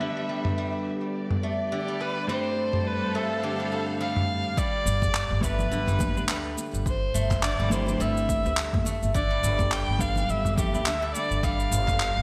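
Earthy and warm, this organic downtempo excerpt moves in a relaxed, swung 4/4 over a G pedal, shifting between G, Fadd9/G and Am7/G. A clean, picked electric guitar playing accompaniment and a silvery, ringing steel-string zither, played with fingerpicks and spinning out arpeggios, open the piece, while a rich bowed string section sustains soft-attack chords under a low-pass filter until 4.6 seconds, its sound pumping with the sidechain. A gritty, compressed sampler-style drum kit with handclaps, shaker and toms enters almost at once, and at 1.7 seconds a focused, up-front kamancheh takes the melody with vibrato, portamento and a trailing digital delay. From about 4.6 seconds an overdriven, punchy electronic kick sits in the background, joined by a woody, growly pizzicato upright bass and distant, bright congas. The bright 1980s-style digital production places the parts in a lush hall reverb alongside a small room ambience.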